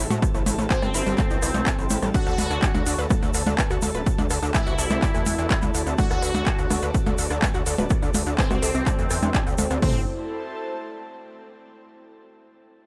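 A layered electronic techno kit of handclaps, hi-hat, rim clicks and percussion blips has its smooth hats and blips pumping against the sidechain, while a second kit sits up front and carries a punchy kick drum, toms and more hi-hat, both kits tape-warm and re-recorded in a small room. This is dark, driving melodic techno cut from a longer piece, built on a drop that runs from the start to 9.8 seconds, where Am moves to D at 2.1 seconds and returns to Am. Underneath, a gritty, aggressive sawtooth bass with oscillator sync, ring modulation and distortion pumps with the sidechain, while a lush, warbling, detuned unison pluck plays arpeggios in the background through tape echo. A juicy, resonant polysynth carries the melody with filter sweeps, chorus and tape echo, shadowed by a very quiet, crystalline wavetable pluck on a second line and a grainy egg shaker. An airy, breathy pad with slow attack and chorus hangs behind it all and lingers alone until 11.7 seconds, in a dry mix with little reverb.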